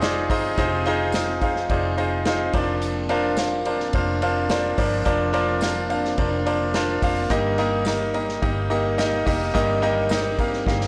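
Piano-driven pop at 107 BPM in Eb major, this anthemic, uplifting excerpt moves from Fm7 through Bbadd9/F to Eb, with a clear, polished baby grand piano up front carrying the accompaniment over a very quiet, detuned sawtooth pad with chorus and a slow attack. A dark, round, foam-muted vintage electric bass and an acoustic drum kit played with bundle sticks, with its punchy kick, hi-hat, snare, ride and crash, hold the groove, while a jingly, close and dry tambourine sits very quietly in the mix until 10.5 s. The whole recording is blown-out and overdriven, set in a moderate recital hall reverb, and a drum fill arrives at 10.7 s just before the cut.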